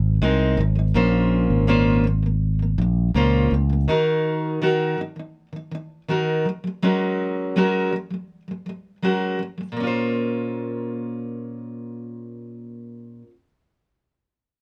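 Close, detailed microphones and a light reverb give this pop excerpt an intimate, tender and reflective feel. A fingerpicked steel-string dreadnought acoustic guitar sits up front, its fresh strings ringing warm and full-bodied as it carries the accompaniment across the whole recording. A fingered electric bass joins it at the start, direct and amped with a warm tone, but drops out at 3.9 seconds and leaves the guitar alone. The harmony moves through lush added-ninth chords, from Abadd9 to Bbmadd9, then Ebm and Gbadd9. A new passage arrives at 9.8 seconds, returning to Bbmadd9 and holding the gentle, contemplative mood.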